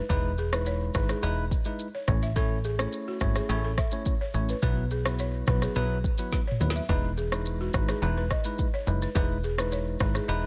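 Sunny and romantic, this short afrobeats cut from a longer piece moves at 106 BPM in a straight 4/4 in E major, its chords cycling through Emaj7, A and Bsus4. An electronic afro-pop drum kit with a deep kick and woody snare sits up front beside a punchy, funky analog bass of detuned sawtooth and pulse waves shaped by a fast-attack filter pluck, while a bright, bell-like tine electric piano supplies clean accompaniment. A buzzing, close-miked balafon struck with soft rubber mallets carries the riff through a delay, and a drum fill at 6.3 seconds leads back to Emaj7 in a mix with little reverb.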